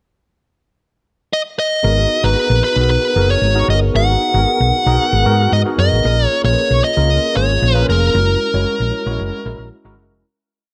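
A straight 4/4 groove at 114 BPM drives this slick, bittersweet piece of polished 1980s jazz-funk pop in G# minor: a smooth, overdriven, picked lead guitar sits up front from 1.3 s with a motif-based melody; at 1.8 s a round, punchy, up-front hollow-body bass joins with an agile syncopated line using chromatic approach notes, alongside a worn, slightly out-of-tune tine electric piano with analog chorus and light overdrive, heard through its built-in speakers, adding syncopated rootless chords with grace notes over G#m7, A#m7 and F#7, and the whole piece, set in digital ambience, fades out from 8.1 s.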